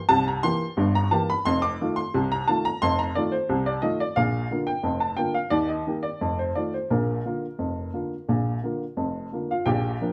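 A moderate studio reverb surrounds a woody, slightly detuned upright piano that sits present and up front, its notes decaying quickly. This is a cheerful, playful ragtime piece in B-flat major, moving at 88 BPM in a straight 2/4. The upright piano plays alone throughout the 10.1-second clip, ranging from a deep F1 up to D6. The harmony moves from C7 to F7, settles on B-flat at 4.2 seconds, then passes through E-flat and F7 before returning to B-flat. Cut from a longer piece, the clip captures a single section of jaunty, old-time charm.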